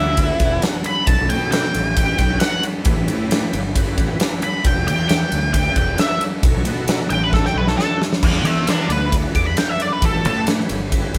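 Swaggering and driving, this blues rock power trio cut with a southern rock edge moves at 134 BPM in a straight 4/4, its lead guitar soloing from the start over dominant-seventh changes on E, B and A. The dark, octave-fuzzed guitar sits up front with wah and distortion, while a bright, overdriven picked bass pushes underneath and a thick, gritty tonewheel organ holds very quiet sustained chords through a slow rotary speaker. A huge, punchy arena drum kit with a medium-tuned snare and bright cymbals enters at 0.2 seconds and drives a fill from 7.3 to 8.2 seconds, all heard as a band playing live in a stone room with moderate reverb.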